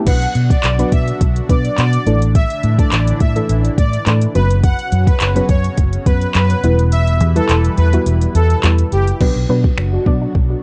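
A cassette-tape haze and light reverb soften this bittersweet, driving dance-pop excerpt, cut from a longer piece. Up front, a smooth R&B drum kit with a soft kick, smooth hats, finger snaps, handclaps and crash cymbal carries a vintage 12-bit sampler grit. Beneath it, a dark, foam-muted fingered electric bass sits punchy and amped, breathing with sidechain pumping. A lush, thick pad of detuned unison holds sustained chords through chorus and phaser, while a gentle, round pluck with a fast attack plays accompaniment and a smooth supersaw sings the melody through analog delay. The kick drops out from 6.9 to 9.2 seconds. At 9.2 seconds a very quiet, nasal, wave-folded analog pluck enters with arpeggios as the harmony returns to its opening chord.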